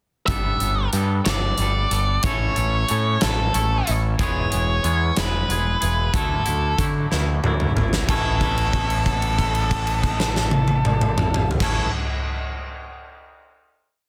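Quiet-loud alternative rock in 6/8 at 62 BPM in A major, restless and bittersweet, where a dark octave-fuzz lead guitar states hook phrases over twangy, clean arpeggios with harmonic tremolo and tape echo, a growling overdriven bass drives eighth notes up front, and a huge arena kit with a fat snare and punchy kick plays a drum fill from 7.1 to 8.1 seconds before the piece settles on a final A chord with a note held through 11.6 seconds, all in a dry, dense, heavily limited modern master.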